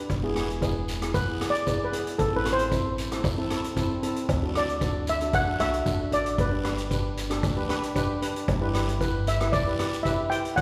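A shimmering lead steel pan, played with soft rubber sticks and sitting up front, carries a mellow, dark melody over a double-seconds pan accompaniment, a woody, thumpy pizzicato upright bass, a boomy street-band drum kit of hi-hat, kick and rim click, and a raspy, close guiro in this sunny, carefree 114 BPM calypso cut from a longer piece, its chords moving from E through Am, D and G to Em7/G within a reverberant concert hall heard from further back.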